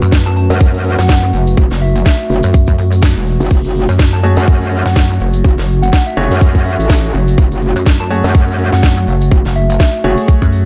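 Gritty and bouncy, this swung bass house excerpt rides a tight, up-front electronic kick and a garage kit with cracking snare, crisp hats and crash, while a heavy pulsing pluck wobble bass and an aggressive metallic wobble bass grind under a moody detuned analog pad, a grainy cabasa, a soft phased synth bell in the background, and clear, worn baby grand piano stabs that enter at 4.2 seconds, all held in light reverb.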